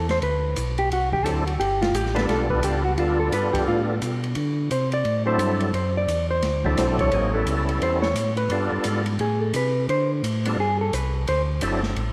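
A dreamy mix soaked in lush hall reverb gives this short cut from a longer soul jazz organ trio a hazy, spacious glow. The mood is swinging and bluesy, with a relaxed swing on the eighth notes. A mellow, round tonewheel organ sits up front carrying the bass line, its clean tone colored by chorus vibrato and a slow rotary speaker. A fingered hollow-body electric guitar takes a dark-toned solo from the opening, while at 1.2 seconds a second, percussive tonewheel organ enters on the melody, thick and lightly overdriven with third harmonic percussion, also turning through a slow rotary speaker and chorus vibrato. An acoustic jazz kit of kick, snare, hi-hat and ride sits low in a small room, with a boomy kick, dusky cymbals and a rolled-off top. The harmony moves among D9, G9 and A9 chords, passing through a brief D5 and a plain G before settling back on D9.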